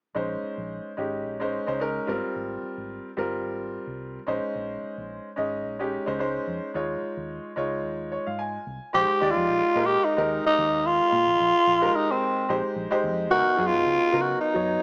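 A lightly swung 16th-note groove at 109 BPM in 4/4 drives this slick, intense electric jazz fusion excerpt in Bb dorian, with a clear, boxy baby grand piano comping up front through plate reverb over a dark, round, punchy foam-muted fingered electric bass. After a piano fill at 7.8 seconds, a growling tenor saxophone solo enters at 8.9 seconds, breathy and raspy with subtone, vibrato and scooped notes, sitting up front with its own plate reverb. The harmony moves through lush minor eleventh, major thirteenth and suspended chords, all in a moderate club reverb with a small-speaker character.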